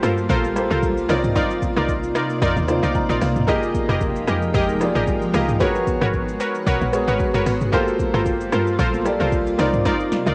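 Amapiano with a deep, late-night mood, moving at 113 BPM in 4/4 with a light swing on the sixteenths and set in F dorian, this short excerpt is cut from a longer piece. A smooth, vintage-toned grand piano carries the accompaniment, adding a brief fill at 2.7 seconds. Up front sits a crystalline, detuned wavetable pluck playing bright stabs through chorus and analog delay, while a cloudy granular pad holds slow-blooming chords in the background, blurred by its own reverb. A tight, punchy log drum bass anchors the low end with fast-attack notes that decay quickly, under a layered deep house kit of deep kick, punchy snare, hi-hat, rim click, shaker and toms, roughened by overdrive, 12-bit sampler grit and cassette tape, with a drum fill at 9.9 seconds. High-tuned congas played with soft hands ring very quietly from 0.4 seconds, and the whole take has the light reverb and character of a home cassette recording, drifting through minor eleventh chords from Gm11 to Cm11, Fm11 and Abm11.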